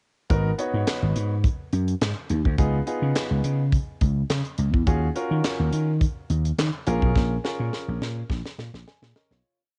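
From 0.3 s, a growly, punchy slap bass plays a fat syncopated boogie line with chromatic approach notes over a dry, up-front funk drum kit with a high-tuned snare layered with handclaps, while a clear grand piano with audible action noise pushes rootless chords through Abm7, Db9, Ebm9 and Bbm7, giving this funky, late-night early-eighties boogie funk piece at 105 BPM a cassette-tape tint on piano and drums and a small-room home-recording intimacy as a drum fill starts at 7.2 s during the fade-out and a short piano fill follows at 8.6 s.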